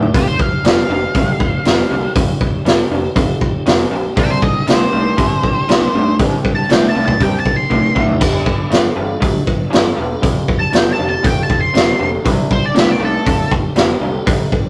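A gritty, driving blues rock and southern rock groove in a straight four opens with the full band at once: a punchy, up-front vintage drum kit with dark cymbals and a high-tuned snare, a raw, double-tracked garage guitar riff with lo-fi overdrive, and a fuzzed, picked electric bass sitting in the background. A very quiet tonewheel organ holds clean, scooped, piping chords through a slow rotary speaker with chorus vibrato. At 0.2 seconds an octave-fuzz lead guitar enters with a dark, distorted melody colored by wah, carrying on until 13.5 seconds. The harmony moves through F7, C7 and G7 dominant chords, and a drum fill at 7.7 seconds leads into the G7. The whole take has the rough feel of a rehearsal room, with tube saturation and a moderate stone-room reverb. It is cut from a longer piece.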